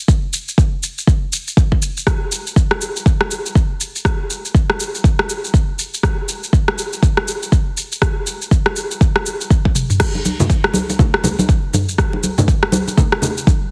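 Heavily compressed with a radio-like sheen and light reverb, this short house groove, cut from a longer piece, has a spiritual, warm mood and a swung sixteenth-note feel. A deep, produced electronic kick sits up front beside an electronic afro-pop drum kit of crash cymbal, rim click, shaker and toms, both carrying a small room ambience. After a drum fill at 9.6 seconds, ringing, medium-tuned acoustic congas enter at 10.2 seconds, close and dry.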